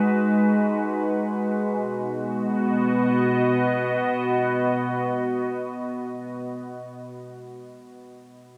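Luminous and weightless, this ambient fragment drifts in free time in B major, tuned to A4 = 443 Hz, and is cut from a longer piece. A single evolving wavetable pad sits up front, holding slow-attack sustained chords from B2 to D#5 with a morphing, warbling, vintage sine tone, chorus and its own reverb, moving from G#m7 to B at 1.7 seconds before its long release fades by 6.3 seconds. A dark production and a wet cathedral reverb with a 7.0-second decay surround it in a vast space.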